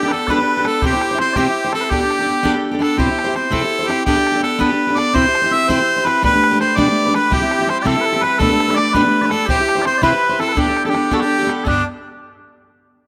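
Celtic folk jig in 6/8, cheerful and lively, with a harmonica carrying the melody up front in a smooth, classical style with light vibrato, while mellow small bagpipes add a sweet, sustained second line in the background that drops out at 2.6 seconds and returns at 7.3 seconds. A bright, full-bodied jumbo steel-string guitar picks the accompaniment up front in the mix, finger squeaks audible, as a boomy, open bodhran, heard close, supplies the percussion over chords alternating between Gadd9/B and C before settling on G. A moderate, lush hall reverb surrounds this rough home-demo mix, which is cut from a longer piece.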